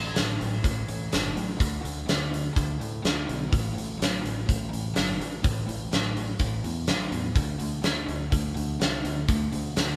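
An overdriven semi-hollow guitar and a growling, fingered electric bass open this brooding, gritty blues rock and southern rock excerpt together at 0.0 seconds, with a big rock drum kit joining at 0.2 seconds. At a straight 125 BPM in 4/4, the double-tracked, picked guitar riff sits in the background, its hollow-body tone thick with drive as the harmony moves between A5 and D5. The bass adds its own overdrive, sounding direct and amped beneath the riff. Up front, the acoustic drums bring a fat snare, a punchy kick and hi-hat with a mid-forward, big-room presence. The trio plays live in one small room with moderate reverb, and the passage is cut from a longer piece, running to 10.0 seconds.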